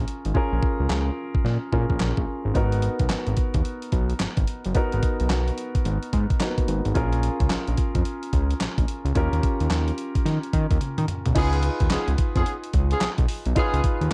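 New jack swing R&B at 109 BPM in G# dorian, punchy and slick, with a thumpy, sampler-style 12-bit drum machine and a fat sawtooth analog bass with a filter sweep riding up front under an intimate concert grand piano with audible action noise, all in a dark production, until a drum fill at 10.8 seconds brings in tight, jazz-style horn stabs with light vibrato and tape echo at 11.4 seconds over a C#7 chord.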